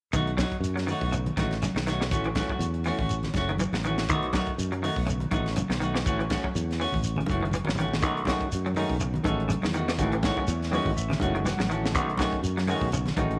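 Joyful and funky, this afrobeat excerpt moves at 122 BPM in 4/4 with a light sixteenth-note swing, sitting in B mixolydian as the chords alternate between B7 and A6. A tight funk drum kit with a high-tuned snare and tight kick drives the groove alongside hi-hat, while damped, thick-skinned congas played with soft hands sit in the background and a grainy, close, dry shekere adds texture. The fingered electric bass is the most forward part, bright, growly and punchy. Two picked guitars share the mix: a clean, hollow-bodied semi-hollow guitar plays low arpeggios in the background, and a second clean guitar delivers stabs. At 8.0 seconds, just after a drum fill, a barky, lightly overdriven tine electric piano joins as accompaniment through a combo amp, adding its own fill at 10.5 seconds, with a moderate echo-chamber reverb giving the ensemble a roomy finish.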